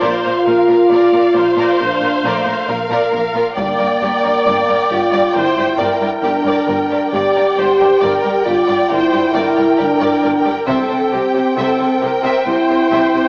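Dark and heroic, this slow cinematic orchestral cue at 68 BPM is cut from a longer piece. It moves from Bb through Gm to C, carried by up-front, shadowy French horn chords and a rich, vibrato-laden viola section with portamento, while warm violins sing the melody above a more distant second violin line. Lush cellos and double basses anchor the low end, and a very quiet taiko ensemble struck with hard sticks enters at 3.6 s and again at 10.7 s, all heard through a moderate scoring-stage reverb and a worn, warbling cassette-tape quality with small-speaker coloring.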